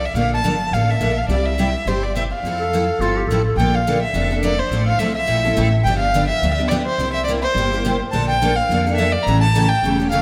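Acoustic string swing in the jazz manouche tradition, this charming, swinging excerpt moves at a brisk 211 BPM in 4/4 with a lilting swung feel. A warm, expressive violin carries the melody up front, its bowed line colored with vibrato, portamento and an analog delay. Beneath it, a woody, thumpy upright bass on gut strings plays pizzicato with a dark tone, while a bright picked steel-string acoustic guitar with fresh strings supplies accompaniment through an ensemble chorus from 0.2 seconds. A breathy, whispered clarinet slips in briefly as a second line between 2.6 and 3.6 seconds, its subtone and scooped notes lending a vintage, intimate touch. The harmony moves from Bbmaj7 through C and Fmaj7 into a second section that travels through G7 and C7 to close on A7, and the whole is bathed in a lush hall reverb that gives the mix a dreamy, soaked quality.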